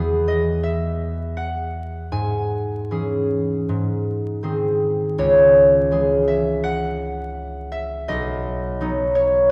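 A concert harp plays this gentle, wistful classical solo alone, its warm, ringing, fingerpicked tone sitting up front across a span from B1 to G#5 in a freely rubato 4/4. The harmony moves from E through C#m/G# and G# to C#m at 5.2 seconds, then shifts to B at 8.1 seconds in this short passage cut from a longer work. A long church reverb and a distant room perspective surround the harp, while vinyl crackle lends an aged patina.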